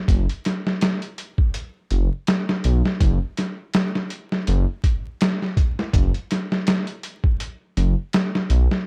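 Dry and dark, the recording carries a layer of vinyl crackle over a close, nearly reverb-free sound, in a short cut from a longer trip hop piece. The mood is cinematic and smoky, with a lazy swung feel on the sixteenths. A detuned sawtooth bass rumbles deep in the low register, its unison voices beating against each other under a sine foundation, with a fast attack, sustained notes and a saturated edge. The sampler-style drum kit sounds compressed, pitched down and muffled, with a thumpy kick, a medium-tuned snare and hi-hat, all carrying a tape-warm character as if re-recorded in a small room. Both parts sit up front together from 0.1 seconds, and the drums carry on alone briefly after the bass stops at 8.7 seconds.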